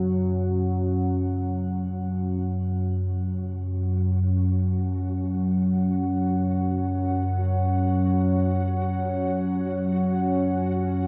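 In free time, this unsettling, desolate dark ambient drone, cut from a longer piece, holds an F#5 chord as a mellow, evolving analog drone with detuned sawtooth and pulse-width-modulated tones and chorus sits up front beside a deep, warbling, vintage pad of sustained chords with unison, sub octave, chorus and shimmer reverb, while a faint, flickering, grainy granular texture on F#4 enters at 3.3 s and keeps fading in through the end, the whole set in a huge ambient reverb with a dark, warm production.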